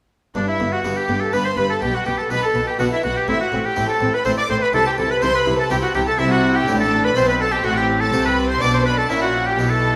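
A lush symphonic violin section opens this lively, festive baroque-style concerto movement in triple time, joined at 0.4 s by an up-front solo oboe with a clear, smooth top carrying the melody alongside an intimate chamber violin section on the second line. A round, plucked harpsichord and a distant viola section fill in the accompaniment, while an expressive cello section and a rich, even double bass section anchor the bass. Moderate scoring-stage reverb lends the ensemble a spacious sheen as the chords move from G through Am and C toward a diminished turn in this passage taken from a longer piece.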